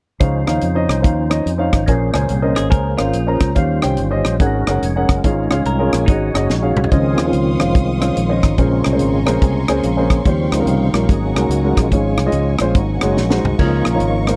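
Uptempo gospel at 144 BPM in 4/4 with a swung eighth-note feel in D-flat major, this jubilant, hopeful passage is cut from a longer piece. Up front, a woody upright piano carries the accompaniment alongside a punchy, fingered electric bass and a tight funk drum kit with a high-tuned snare, dark cymbals and a snug kick, and the drums add short fills. A fat, lightly overdriven tonewheel organ holds sustained chords with key click, percussive attack, chorus vibrato and a slow rotary speaker, then takes a solo from 6.9 seconds as a lush, bowed string section enters alongside it with smooth vibrato. Between 2.6 and 6.7 seconds, a clean, picked semi-hollow electric guitar adds a quiet second line coloured by phaser, and the piano steps forward with a fill during the solo. Rich extended chords such as Dbmaj9, Bbm9 and Eb13 cycle twice before settling on Db69, all captured in a dry, close 1970s-style studio sound.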